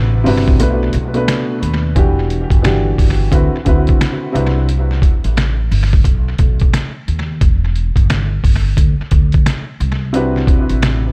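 A gritty, compressed, pitched-down sampler-style drum kit sits up front with a thumpy kick, a medium-tuned snare and hi-hat treated with tape echo, driving this dark, reflective boom-bap hip-hop cut in E minor at 88 BPM with a swung 16th-note feel. A bright, woody acoustic upright bass with steel strings plays pizzicato throughout, while a mellow, smooth vintage upright piano, colored by cassette tape, filtering and tape echo, lays down extended chords until 4.7 seconds and returns at 10.1 seconds. The echo-heavy small-room mix gives the fragment a close, hazy intimacy.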